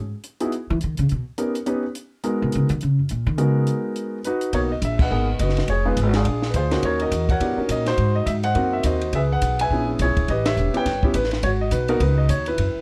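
A brisk swung 4/4 drives this moody, cool jazz piano trio fragment, where a woody, thumpy pizzicato upright bass on gut strings takes a solo over the first 4.5 seconds alongside a dark, compact cocktail kit with a high-tuned snare and punchy kick, while an intimate grand piano with audible action noise and long sustain carries the melody through shifting minor-key harmony, the band hitting accents at 5.0 and 10.4 seconds in a dry, closely miked sound.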